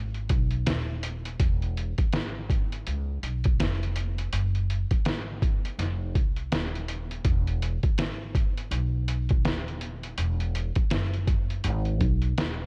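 This is a jazz-hop excerpt in the hip hop vein, smooth and cool, moving at 82 BPM in 4/4 with a 60% swing on the sixteenths and set in E major. An acoustic upright bass, plucked pizzicato on steel strings, carries the low end from 0.0 s to 12.7 s, ranging from D#1 to C#2 with a woody, warm tone placed up front. A lo-fi sampler-style drum kit of hi-hat, kick and snare joins at 0.1 s, sounding compressed, pitched down and muffled, with a thumpy kick and a fat snare. The drums carry a vintage 12-bit sampler grit and a tape-warm character, as if re-recorded in a small room, and they sit up front in the mix. Light reverb surrounds the pair, and after a brief opening passage a new section begins at 1.4 s and runs to the end of the cut.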